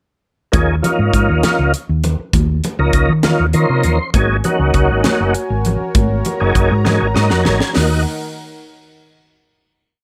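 Driving and funky, this short electric jazz fusion piece in 6/8 rides on syncopated chord stabs from an up-front tonewheel organ with key click and a slow rotary speaker, a dark, round hollow-body bass riff, a crisp, polished kit with punchy kick and high-tuned snare, and ringing congas in the background, while a smooth, detuned sawtooth pad with chorus enters at 4.4 seconds, organ and drum fills arrive at 6.9 seconds, and the groove settles onto a final Ebm chord at 7.8 seconds under light reverb.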